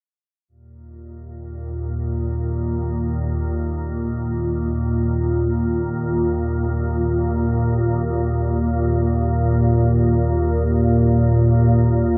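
Unsettling and ominous, this dark ambient drone unfolds in free time, a short piece cut from a longer work and tuned to A4 = 439 Hz. Over an Eb5 harmony, an organ-like drone enters at 1.1 seconds and carries the piece alone until it closes at 12.2 seconds. Pitched low, between Eb2 and Bb2, the drone is calm and sustained: detuned sine tones in unison with a slow attack and a long release. Ensemble chorus, built-in reverb and a diffuse ambient delay blur its edges, though it still sits up front. The whole recording is soaked in a cathedral reverb with an RT60 of 5.3 seconds, giving a dreamy, cavernous atmosphere.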